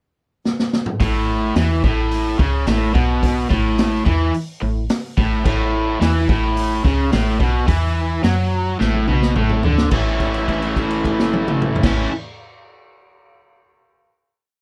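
A dry recording with little reverb carries a swaggering, sunny classic rock piece in A major at 108 BPM, tuned slightly flat to A4 = 437 Hz. A vintage drum kit with a distant, roomy sound, dark cymbals and a punchy kick opens with a fill at 0.4 s, then settles into a big rock groove. At 1.0 s a bright, overdriven, double-tracked electric guitar enters up front with a single-note riff, doubled by a woody, round FM bass playing a syncopated line; a second drum fill at 8.8 s leads into a final A chord held from 9.9 s.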